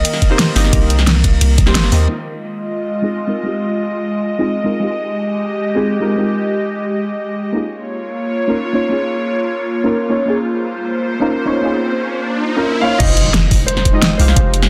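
An airy, breathy pad and a dark, warbling chord stab carry this rolling, soulful liquid drum and bass excerpt, while the overdriven pop kit with its fat snare, the knocking electronic kick and the deep sine 808 bass drop out near 2 seconds, leaving the filter-swept synths alone until an electronic riser climbs from 11.4 seconds. A brief tape-echoed grand piano line slips in at 12.8 seconds, just ahead of the impact that brings back the drums and the bass at 13.0 seconds.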